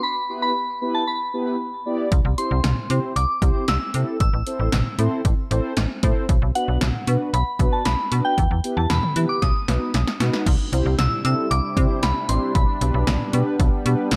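A soft, pure synth bell opens this nocturnal, driving synth-pop excerpt, its gentle FM tone warbling through chorus, phaser and delay as it carries the melody in a high register. Just behind it, a mellow synth brass part supplies the accompaniment with round, detuned sawtooth chords, a filter sweep and vibrato giving it a dark, brassy glow. At 2.1 seconds a slap-like FM bass with a snappy, metallic attack and a punchy analog drum machine arrive up front, the kit's tape-warm kick, snare, hi-hat, crash and toms set in gated reverb over a straight beat. The harmony moves through Em, C, Am and Bm, and a drum fill at 9.4 seconds leads into a new section at 10.5 seconds on Cadd9 and G/B. There a sweeping resonant pad enters low in the mix, its airy, evolving sawtooth layers and noise swelling slowly with chorus and a bright, long release, while light reverb, digital ambience and a faint mains hum sit under the whole recording.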